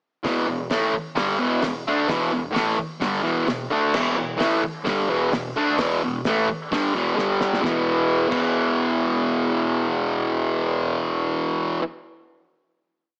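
A small room with light reverb and a small-speaker sound frames this raw, swaggering garage rock piece at 130 BPM in a straight 4/4. A bright, double-tracked fuzz guitar sits up front, picking a compressed power-chord riff on E5 between E2 and D4. Beneath it, a cloth-damped, thuddy acoustic kit with a fat snare, tight kick and dark cymbals drives a garage stomp groove, then plays a fill at 7.2 seconds that leads to a final E5 chord at 7.6 seconds, with the drums dropping out by 8.4 seconds.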